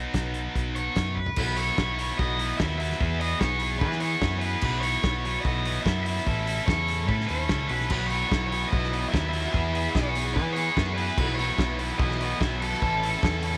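A small, close room gives this wistful, jangly indie rock excerpt at 147 BPM in 4/4 with a straight feel a tight, live-sounding ambience. A bright, high-gain distorted guitar riff sits up front alongside a dark, round overdriven picked bass, while a loose acoustic drum kit with a fat snare, tight kick and rolled-off top drives the groove, marking the change of section with a fill at 1.2 seconds. Above them, an overdriven electric guitar carries the melody in a higher register, its picked notes touched by slapback echo. From 1.4 seconds a very quiet, hollow, flute-like pad holds mellow, detuned chords with a slow attack and long release as the harmony cycles through B suspended, E and A-add-nine shapes. At 7.9 seconds a compressed fuzz guitar joins in the background, adding a riff of its own with chorus and slapback echo to thicken the texture.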